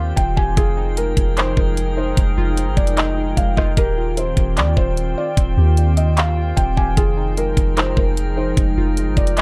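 Dreamy and blissful, this atmospheric cloud-rap excerpt drifts in a half-time feel over chords that sway between Eb69 and Fm11, with a felt-muted upright piano carrying a soft, intimate melody through delay. Beneath it, a warbling, nostalgic tape-like pad pumps gently against the beat, lo-fi synth keys spin chorused and phased arpeggios, and a faint glassy texture of drifting overtones hangs in its own reverb. A round, deep 808-style bass sits up front, and a trap kit enters at 0.2 seconds with a knocking kick, bright hats, handclaps and rim clicks, all set in a digital ambience.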